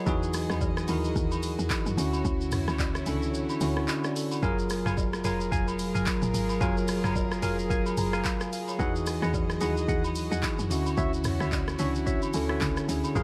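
A bell-like, bright tine electric piano provides accompaniment in this soulful amapiano excerpt at 110 BPM, over an up-front deep house drum kit with a deep kick, a woody, punchy log drum bass, reedy chamber strings pumping in the background, background agogo bells and woodblock, and a hollow organ stab with chorus and tape echo entering at 4.4 seconds, while the kick drops out from 3.3 to 4.4 seconds and the piano plays a fill at 7.7 seconds.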